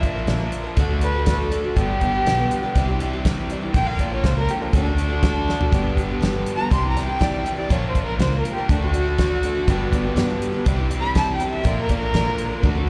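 Heard through a venue's PA with the light reverb of a recital hall, this jangly, open-road folk rock and heartland rock excerpt features a dark, nasal, woody fiddle soloing with light vibrato over a shimmering, octave-doubled picked twelve-string acoustic guitar and a double-tracked overdriven electric guitar riff, with slapback echo on all three and analog delay on the fiddle, while a round, foam-muted fingered electric bass and an up-front, damped 70s drum kit with a fat snare and tight kick anchor a looping Bb, D, G, Cadd9 progression, the drums breaking into fills at 5.5 and 12.6 seconds.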